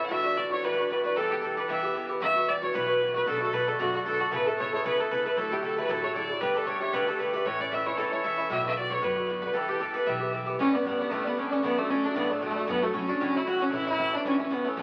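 A clear, intense bowed fiddle leads a wild, spirited Celtic reel in E dorian at 229 BPM with a light swing. Fingerpicked koto adds a dry, woody second line, and an up-front Irish bouzouki picks metallic double-string accompaniment. A pizzicato upright bass with steel strings joins at 2.2 seconds, and the whole fragment of a longer piece sits in a wet studio ambience under the crackle of a very old 78 rpm record.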